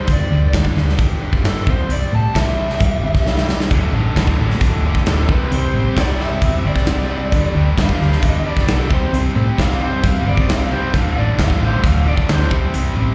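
A straight 4/4 groove at 133 BPM drives this confident, swaggering classic rock excerpt, captured live through a club PA, where an up-front acoustic kit with a punchy kick and medium-tuned snare rings in a stone-room ambience, a dark, round hollow-body bass sits beneath a bright, distorted rhythm guitar riff in the background, a drum fill at 3.3 s ushers in a second overdriven guitar riff with slapback echo at 3.7 s, and over the G5, C, D5 and Csus2 changes a lo-fi lead guitar through a small cranked amp solos throughout, coloured by plate reverb and slapback echo.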